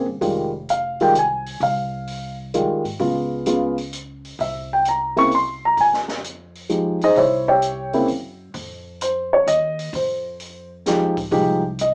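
A dark, mellow grand piano carries the melody from the first moment, sitting up front over a woody pizzicato upright bass, with an open jazz drum kit joining at 0.2 seconds on hi-hat, a boomy kick and a high-tuned snare. This jazz piano trio moves in a swung 3/4 at 130 BPM in F minor, and its mood is cool and smoky. The piano's short sustain and natural tone dominate the balance, while the bass and drums sit well behind it. The harmony passes through Fm9, Db7, C7 and C(b9) before settling on an F7 chord with its third omitted at 8.5 seconds, where the phrase begins again. Light reverb and a small-speaker quality give the sense of a band playing live together in one room, and the recording is cut from a longer piece.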